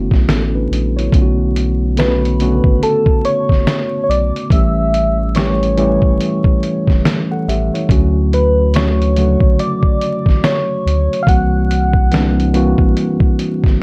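A light reverb and a steady bed of vinyl crackle frame this melancholic, reflective lo-fi hip hop excerpt, cut from a longer piece and swung loosely in 4/4. A worn, slightly out-of-tune tine electric piano sits up front with a clean, direct tone softened by a low-pass filter, carrying the Bm9, A7, Dmaj7 and C7#11 changes, while a deep, round dub sub bass with a triangle and square wave character holds sustained notes underneath. The sampler-style drum kit sounds compressed, pitched down and muffled, with a thumpy kick, a fat snare and hi-hat, as if re-recorded in a small room, and it stays up front throughout. At 2.0 seconds a gentle, keys-like FM lead enters with a fast attack and decaying notes, its tone thickened by chorus, rounded off by a low-pass filter and trailed by analog delay. The lead drops out at 13.0 seconds, leaving the piano, bass and drums to close the excerpt.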